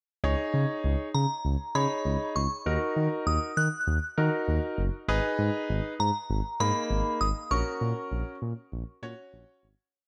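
A straight 4/4 pulse at 99 BPM drives this short, cool synth-pop piece, with a smooth, sequenced synth bass and a clear concert grand piano pushing triad chords through C#sus2, D#m7, G#m and F#/A# from 0.2 seconds. At 1.1 seconds a glassy FM bell enters with a crystalline, warbling motif-based melody, treated with chorus, tremolo and digital delay. The sound sits in a small room with light reverb, and the whole piece fades out from 7.5 seconds.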